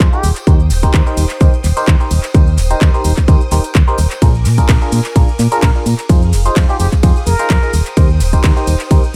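Uplifting and feel-good, this piano house excerpt runs at 128 BPM in 4/4 with a light 16th-note swing, sitting in Eb major over chords of Eb6, Bb7, Fm7 and back to Eb6. A punchy, layered electronic kick sits up front beside a round, dark FM bass, and the bass, electric piano and strings all carry sidechain pumping. A biting, percussive FM electric piano plays the riff through a phaser and tape echo, while a shimmering vintage string machine holds soft-attack violin chords in the background with ensemble chorus. The house drum kit adds handclaps, metallic hi-hats, ride cymbal and shaker with tape echo, and a tambourine lends live-room texture far back in the mix. A plunger-muted trumpet in a jazz style brings clear wah-wah tones, vibrato and scooped notes, briefly near the start and again from 5.5 to 7.7 seconds, all set in an echo-heavy digital ambience.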